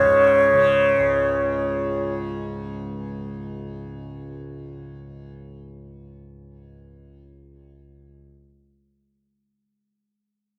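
A brisk, straight 167 BPM pulse in 5/4 carries this short, devotional and radiant Indian classical fragment, tuned to A4 = 439 Hz. An airy bamboo bansuri sits up front with vibrato, a crisp attack and lifted highs, voicing its melody around C#5 until 2.1 seconds. A softly plucked, buzzing tanpura drone spans C#2 to C#3 with a shimmering, warm acoustic glow through 8.1 seconds, all set in studio reverb within a rough home demo mix.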